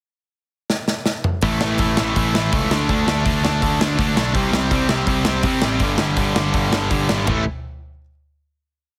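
A straight, driving 4/4 punk rock pulse opens with a drum fill at 0.7 seconds on a big acoustic kit with punchy kick, medium-tuned snare and bright cymbals, settling into an up-front two-step groove. At 1.4 seconds two overdriven picked guitars, one a cranked stack, hammer eighth-note power chords while a growling, overdriven picked bass drives eighth notes beneath them through a raw, urgent verse that closes on a final chord at 7.3 seconds. The dry, heavily compressed radio-style sound keeps the whole short piece tight and in your face.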